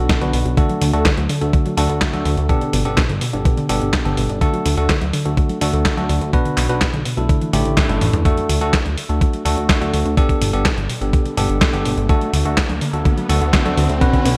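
A thumpy, gritty electronic kick sits up front and drives this romantic, danceable italo disco passage, cut from a longer piece and set in a straight 4/4. Beside it, a dusty soul drum kit with a medium-tuned snare, handclaps, hi-hat and toms carries gated reverb and the compressed punch of a big room, with a drum fill and a band accent leading into the second section at 8.3 seconds. A glossy, retro synth bass with a chorused pulse-and-sawtooth tone holds the low end. Above it, a bell-like, barky electric piano plays bright, clean stabs with delay, while a mellow, warbling, lo-fi pluck spins detuned arpeggios in the background through chorus and delay, gaining a filter sweep in the second section. Under a light digital ambience, the chords move from Bm through D and Gadd9 to an Asus4, and a very quiet electronic riser enters at 10.9 seconds.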